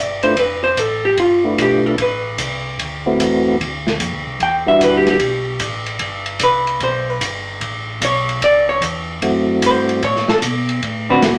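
A swinging 4/4 groove drives this short fragment of soulful, greasy soul jazz organ trio music at a brisk pace. A dark, clean, picked hollow-body electric jazz guitar sits up front and takes a solo across almost the whole passage, moving over a progression from G13 through D13, Em7 and F#m7b5 before landing on D6. Underneath, a mellow, round tonewheel organ carries the bass line with audible key click through a slowly turning rotary speaker. A second tonewheel organ, soft and flute-like with second-harmonic percussion, chorus vibrato and slow rotary, plays the melody up front, dropping out at 5.2 seconds and returning at 9.2 seconds. An acoustic jazz kit of hi-hat, kick, snare and ride keeps time with a boomy kick, medium-tuned snare and shadowy cymbals whose top end is rolled off, all set in a wet club reverb.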